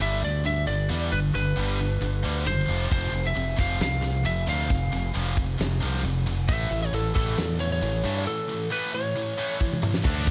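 Driving along in a straight 4/4 at 134 BPM, this powerful, energetic hard rock excerpt opens with a slightly broken-up, compressed lead guitar melody up front, touched with digital delay, over two bright, distorted high-gain rhythm guitars and a growly, direct fingered bass as the harmony moves from G to F5 and then A. A big acoustic rock kit with a fat snare and tight kick joins up front at 2.9 s, rolling through a drum fill at 9.6 s before a double-tracked high-gain guitar riff slips in behind at 10.0 s, all set in a small room ambience.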